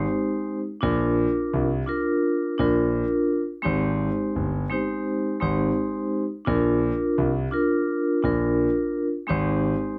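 A ringing, metallic vibraphone with medium hard mallets and slow motor vibrato, filtered and given a cassette-tape tint, sounds from the first moment of this confident, warm boom-bap hip-hop fragment at 85 BPM with a lightly swung 16th feel. It plays accompaniment chords that alternate between Abmaj7 and Bb over a dark, mellow concert grand piano that enters alongside it. The piano's deep, smooth bass notes sit up front with audible action noise and a vintage intimacy in a moderate studio reverb until the piano stops at 9.7 seconds.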